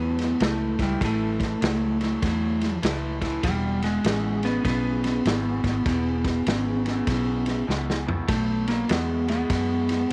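A lightly driven lead guitar, picked and slightly broken-up, carries the melody over a rollicking, soulful electric blues shuffle in E major at 99 BPM, alongside a compressed, lo-fi rhythm guitar riffing through a small old amp, a dark, round, foam-muted fingered bass, and an up-front vintage drum kit with a muffled, rolled-off top that enters at 0.2 seconds and plays a fill at 7.7 seconds, all in a small room with light reverb as the chords move from A to E and land on B5 at 8.3 seconds.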